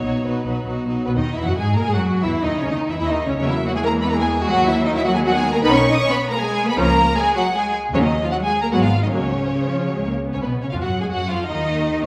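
Spirited and cheerful, this brief passage cut from a quick classical-period movement for string orchestra moves in a lilting 3/4 at roughly 144-162 BPM, its rubato pulse giving the phrases a flexible, breathing feel. Set in B major and turning toward F# major from 5.6 s, the harmony travels through chords such as C#m, B/D#, G#m7 and F#/C#, reaching a bare F#5 before the harmony thins to an unharmonized close at 11.5 s. A front-and-center violin section carries the melody with a focused, vibrato-rich tone and a smooth top, while a second violin section sings an even, supporting line beneath it. Violas, set further back, fill in the accompaniment, and the low end pairs a lush, distant cello section with a double bass section whose bowing has an intense edge. All five sections play throughout, and a wet recital-hall reverb of about 1.3 s lends the ensemble the bloom of a church or concert hall.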